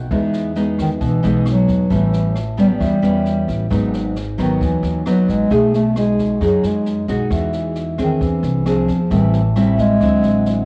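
A dark bass clarinet carries the melody up front from 0.8 seconds, its subtoned, vibrato-laden line with scooped notes and a smooth top sitting in a low register as a jazz-style solo voice. This is a sophisticated, romantic bossa nova excerpt in E major at 133 BPM in a straight 4/4, cut from a longer piece and captured as a home recording on cassette with light reverb. A fingerpicked nylon-string guitar, classical in touch and also up front, provides warm accompaniment with a gentle cassette tape coloring, moving through chords such as Emaj7, A9, G#m7 and B6 before richer turns to Eaug7 and D9. Underneath, a pizzicato upright bass with steel strings sounds woody and growly, its bright tone thickened by transformer saturation. A jazz brush drum kit sits lower in the mix, its medium-tuned snare, rim click and boomy kick heard in a natural studio room sound with a touch of cassette tape grain.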